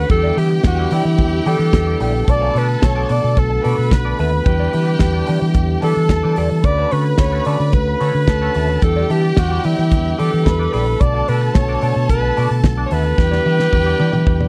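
A dry, close recording with a 1970s studio character opens this short cut from a longer disco piece, played at 110 BPM in a straight 4/4 with a celebratory, glamorous air. Up front, a breathy alto saxophone carries the melody in a jazz style with vibrato, while a lush, bowed string section adds a focused second line. A mellow tonewheel organ holds sustained chords, lightly overdriven with chorus vibrato and a slow rotary speaker, and a clean, picked electric guitar with wah and subtle chorus sits in the background. Underneath, a round, dark fingered bass and a damped drum kit with a fat snare and tight kick drive the groove. The harmony moves mainly between Em7 and Bm7 with a turn through Dmaj7, and a drum fill arrives at 13.2 seconds to close the passage.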